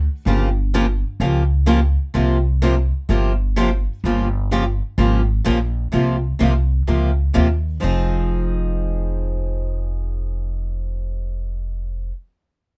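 A woody, thumpy upright bass on gut strings sits up front in this short cut from a longer piece of acoustic string swing in the jazz manouche style, its dark pizzicato tone opening the recording alone and holding the low end from F1 to Eb2. At 0.3 seconds two picked steel-string acoustic guitars join as accompaniment: a bright parlour guitar placed up front, and a softer, warm concert guitar that reaches up to C5. Both guitars share a boxy acoustic character as they move through Gm7b5 and C7sus4 twice in F minor, before the harmony settles on Fm7 at 7.8 seconds for a new section. The tempo is a brisk 127 BPM in 4/4 with a 63% swing on the eighth notes, giving the playing a virtuosic, swinging drive. Close, detailed microphones and a very dry room keep every string attack clear and immediate.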